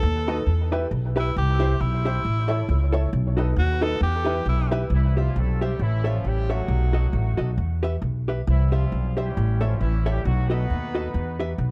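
Swung eighths at 135 BPM in 4/4 drive this upbeat, cheerful ska passage, cut from a longer piece in C major and cycling through Em, C, A and B7. An up-front, woody pizzicato upright bass on steel strings anchors the low end throughout, while a dark, clean hollow-body electric guitar adds compressed, picked accompaniment. A bright, present tenor saxophone with light vibrato carries the opening melody as a solo until 4.7 seconds, and an intimate, natural-sounding upright piano, its action noise audible, punctuates it with stabs; both sit in tape echo and plate reverb. At 4.9 seconds a warm, punchy horn section takes over the melody, tight and doubled in octaves with vibrato, sounding distant and roomy under the same echo and plate reverb. The room itself stays dry.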